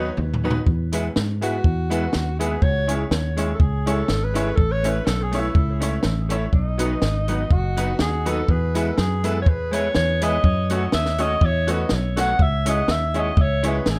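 A short drum fill on a compact cocktail kit with a punchy kick and high-tuned snare opens this upbeat, cheerful ska excerpt in E major at 123 BPM with lightly swung eighths, as a round, foam-muted fingered electric bass, a dark, clean hollow-body jazz guitar and jangly, detuned honky-tonk upright piano stabs with tape echo play along, before an alto saxophone with vibrato, tape echo and plate reverb enters at 1.4 seconds to carry a pop-style solo over a progression that opens on B before moving to E.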